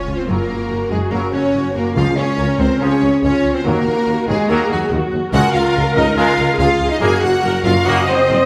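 Mellow French horns hold sustained chords in this adventurous, soaring cinematic passage in Db major at 142 BPM, joined by tight, vintage-toned trombones and a mellow tuba, over a bass of clear, intense cellos and smooth, distant double basses. Lush bowed violins carry the melody and a second line, joined by a pure, crisp-attacked flute on a second line of its own, while dark, expressive violas fill the middle and a bright, ringing harp plays arpeggios through the Gb, Db, Ebm, Db, Gb progression. A round, soft-malleted timpani sounds briefly at 2.0 s, and a wet scoring-stage reverb surrounds this short section of a longer piece.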